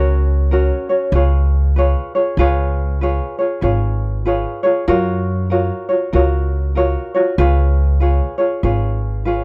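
A dry, close 1970s-style studio sound frames this sunny, relaxed Hawaiian piece in F# major at 96 BPM with a lilting swing, as a light, thumb-plucked tenor ukulele provides accompaniment beside a woody, dark pizzicato upright bass on steel strings, both sitting up front through a chord progression that moves from C#7 to F#maj7 and back to C#7 before the cut at 9.4 seconds.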